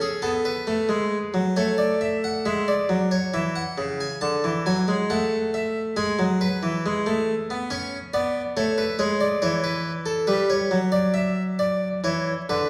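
Classical baroque-style two-part invention for solo harpsichord, serious and solemn in mood, cut from a longer piece and running 12.7 seconds in a steady 4/4. The French-style harpsichord has a nasal, bright plucked tone spanning C#3 to A5, and after a brief opening passage a second section begins at 2.5 seconds, moving through harmonies such as C#madd11, D and Eadd9. The instrument is heard from further back in a recital hall with a long, wet reverb, and a vinyl crackle sits over the recording.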